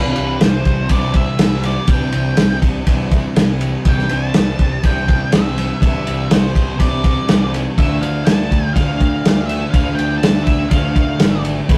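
Wistful and hazy, this short shoegaze and dream pop rock passage sets a distorted octave-fuzz lead guitar melody over a thick, dark fuzz guitar riff in the background, a very quiet clean, twangy fingered electric guitar, a round overdriven picked bass, and a loose, up-front indie drum kit with punchy kick, medium-tuned snare and ride cymbal that joins at 0.2 s, captured in a rough rehearsal-room sound with warm saturation and moderate reverb as Cadd9 gives way to Dmadd9 at 7.8 s.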